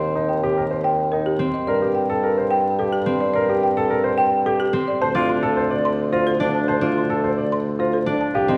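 A woody, rustic marimba carries the melody over a ringing concert harp and a bassoon bass with light vibrato, joined at 0.2 s by a clear, polished grand piano playing arpeggios with audible action noise. This hypnotic, meditative minimalist pattern music moves at 108 BPM in 3/4, its harmony shifting from Eb to Gm to Dm. The short passage is cut from a longer piece and sits in a wet scoring-stage reverb heard from further back in the room, with a layer of vinyl crackle.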